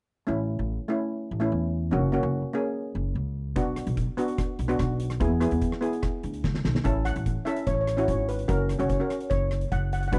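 This is a dry, close recording in a 1970s studio style, cut from a longer calypso with a carefree, festive mood. A lead steel pan, struck with medium rubber sticks, plays accompaniment from the start, its shimmering tone carrying a boxy small-room quality, while a pizzicato upright bass with gut strings sits up front, woody and thumpy. At 3.6 seconds an oversized, low-tuned drum kit joins with a punchy kick, fat snare, rim clicks and hi-hat, sounding dark and smooth yet saturated and gritty in a bright stone room. A drum fill at 6.4 seconds leads into a new section, and at 7.1 seconds a double seconds pan played with hard rubber sticks takes the melody, bright, metallic and up front. The harmony moves through A, F#, Bm and E before returning to A and F#.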